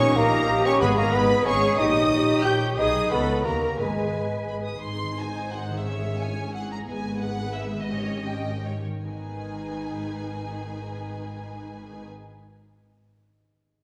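In a rubato triple metre, this fast, stormy romantic passage for symphony orchestra, cut from a longer movement, carries an urgent, dramatic charge. Lush bowed violins with vibrato and a soft attack sing the melody, while a second violin line, focused violas, dark woody cellos and double basses fill the middle and low registers. A very quiet, ringing concert harp plays fingerpicked arpeggios throughout. At the opening, a hushed, airy flute group, a smooth-topped clarinet, a distant cor anglais, a warm bassoon and mellow French horns holding sustained chords add colour, and these parts fall away by about 4.7 s, leaving the strings and harp. Timpani struck with medium mallets add two dry, close strokes early on. The music slows from 6.4 s to 9.0 s before arriving on a minor chord, and a generous scoring-stage reverb gives the strings a spacious glow.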